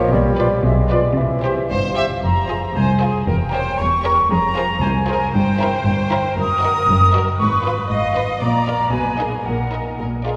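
Drenched in a long cathedral reverb, this short film cue has a playful, whimsical, sneaky mood, with an airy, crisp-attacked flute group up front while a lush violin section carries the melody in the background. Beneath them sit a clear second violin line, rich violas, even cellos and distant double basses. In the opening seconds a mellow bassoon adds colour until 1.9 seconds, while from 0.4 to 2.1 seconds a roomy cor anglais, a punchy but very quiet clarinet and a dark, tight French horn section join before dropping away, and the bassoon returns briefly at 10.3 seconds.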